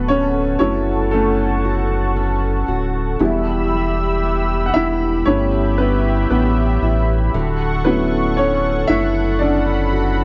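Pop in D major at a slow 58 BPM, hopeful and emotional, where a clear, woody, boxy upright piano sits up front and carries a solo throughout the 10.2 seconds over Dmaj7, Em and G6 chords, supported by a saturated, deep sub bass, a lush, detuned sawtooth pad with chorus holding sustained chords, and fingerpicked steel-string acoustic guitar arpeggios tucked in the background, all captured in a dry, close 1970s-style studio sound in this section cut from a longer piece.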